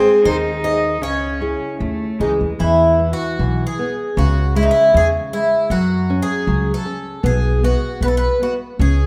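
Tender and nostalgic, this fado-style ballad unfolds with a loose, rubato feel in a short cut from a longer piece. A picked twelve-string acoustic guitar carries the melody up front, its octave-doubled strings giving a shimmering, slightly boxy sound with a hint of swing. A single bowed cello adds a reedy, gut-string second line in period style, falling away at 2.6 seconds as the music moves into a new section. Beneath them, a dark, fingerpicked classical nylon-string guitar supplies the accompaniment, complete with audible finger squeak, while a woody, thumpy pizzicato upright bass on gut strings joins up front at 0.3 seconds. The harmony moves from G# to C#m and then through open fifth chords, and a moderate recital-hall reverb gives the ensemble a sense of space.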